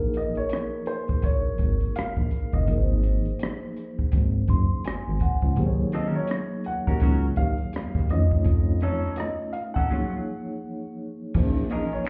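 The recording sounds muffled, as if heard through a wall, with club reverb hanging over it. This short excerpt is a soulful, sultry piece of neo-soul R&B at 83 BPM in 4/4 with a swung sixteenth feel, set in Eb dorian over chords such as Bbm7, Ab9, Ebm7 and F7b13. A smooth sawtooth-and-square synth bass with vibrato sits up front beside a compact cocktail drum kit whose dark, rolled-off kit carries a punchy kick, hi-hat, rim click and crash cymbal. A mellow tine electric piano plays cleanly through its built-in speakers and adds a fill from 4.1 to 5.6 seconds, while a warm baby grand piano carries the melody with slapback echo. An electric guitar at the edge of break-up joins at 5.9 seconds with a compressed, picked second line, and after a break from 9.9 seconds, a distant egg shaker and finger snaps arrive at 11.4 seconds as the harmony returns to Bbm7.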